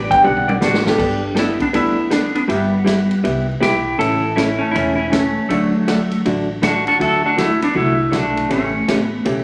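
A clean, up-front lap steel guitar carries the slide melody with volume swells in this down-home, swinging country and western swing piece at 160 BPM in G major, over woody pizzicato upright bass, a dark, picked hollow-body jazz guitar and a big-band drum kit with a punchy kick that opens with a fill, while a mellow, boxy upright piano sounds only until 1.0 s, and wet large studio reverb and vinyl crackle color the mix.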